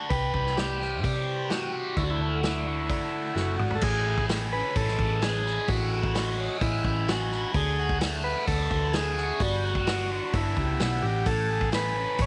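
A straight 4/4 pulse at 129 BPM drives this kaleidoscopic, hypnotic psychedelic rock excerpt, with a vintage drum kit of punchy kick, medium-tuned snare, dark cymbals and toms under a round, dark hollow-body short-scale bass picked in the low register. Up front, a bright, double-tracked overdriven guitar riff runs through phaser while a buzzy combo organ carries the melody through tape echo, over chords moving from Cmaj7 and Dadd9 into Amaj7, D6 and Gmaj7. A drum fill at 3.4 seconds leads into the longer second passage at 3.8 seconds, all set in light reverb and studio ambience with a rolled-off top.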